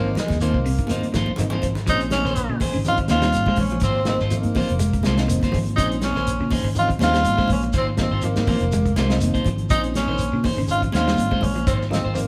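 A wet stone room wraps this short afrobeat excerpt, with the band playing live together at 123 BPM in Bb minor, its sixteenths pushed by a light swing into a driving, defiant groove. Up front, a raspy, gritty tenor saxophone carries the melody with bright vibrato and a punchy bite, while a round, dark fingered bass anchors the bottom. The soul drum kit sounds mid-forward and snug, with a tight kick, a medium-tuned snare and a rolled-off top, and it lands a fill between 0.9 and 1.9 seconds before the main section takes hold. High-tuned, damped congas with hard hands sit in the background, joined by a very quiet, grainy shekere played close and dry. Twangy, slightly broken-up electric guitar stabs, clean picked guitar arpeggios and a barky, reedy electric piano with light overdrive and fast tremolo fill out the accompaniment. The harmony swings steadily between Ab69 and Bbm11 about every two seconds.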